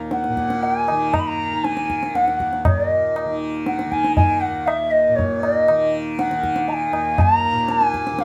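A buzzing, shimmering tanpura drone opens this solemn, introspective fragment of Hindustani classical music, cut from a longer piece in triple metre. A reedy bamboo bansuri carries the melody up front, airy with vibrato and a crisp attack, over low-tuned tabla that sounds close and dry with a short ring. The three play live together in one room with moderate studio reverb, and the music moves into a new section at 2.7 seconds.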